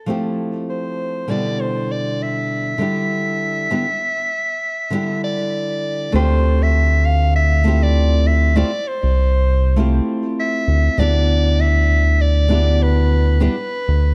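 Sunset chillout in D dorian at 99 BPM with a gentle 16th-note swing, warm and wistful, where a soprano saxophone with light vibrato and a smooth top carries a jazz-style solo melody through digital delay over fingerpicked classical nylon-string guitar, joined at 6.1 seconds by a deep, detuned analog bass, all set in a small room with light reverb and a dark, warm production as the chords move from Fmaj9 and Em7 to Dm11 and Em7/D in this excerpt from a longer piece.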